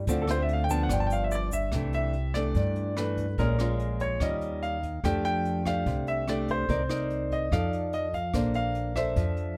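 Bossa nova at 145 BPM with a relaxed, sophisticated mood: this excerpt from a longer piece sets a clear, polished concert grand piano melody up front over fingerpicked nylon-string guitar and thumpy, woody pizzicato upright bass, with a brushed jazz kit adding a boomy kick, hi-hat and rim clicks, and a grainy egg shaker heard in the background only until 1.7 seconds, while the chords move from Dm7 and G7 to C69 and on through Bbm7, Eb9 and F69 to a closing Bbmaj9, all captured with close, detailed microphones and little reverb.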